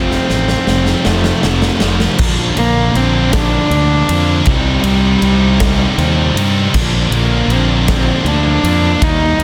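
A cello carrying a reedy, delay-tinged melody sounds from the very start of this cathartic, angsty quiet-loud alternative rock cut in a slow 6/8 at 53 BPM, together with a faint, twangy clean guitar arpeggio that stops at 2.2 seconds, a growly up-front fuzz bass, and two distorted riffing guitars, one high-gain and one fuzz set further back, while a drum fill on a huge arena kit with bright cymbals and punchy kick comes in a split second later, all moving through F, Bb and Cm in a dry, dense, heavily limited mix.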